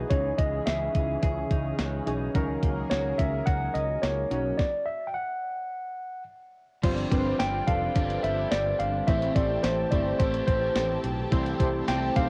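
A mellow tine electric piano carries the melody up front from the opening moment. It sits over round analog keys with a chorus, a lush, airy unison pad shimmering with chorus and phaser, and a clean, compressed guitar riff tucked in the background with tape echo. This 1980s-style pop cut has an uplifting, nostalgic mood. A dark, punchy fretless bass with analog chorus anchors the low end, while an overdriven, sampler-style 12-bit drum machine with a thumpy kick, medium-tuned snare, hi-hat, crash and tambourine drives things, joined by a very quiet metallic cowbell. A stop arrives at 4.6 s, and at 6.8 s the harmony moves to a new section where a bright, overdriven semi-hollow guitar adds ensemble-chorused accompaniment. The sound carries light reverb and the soft haze of a home cassette recording.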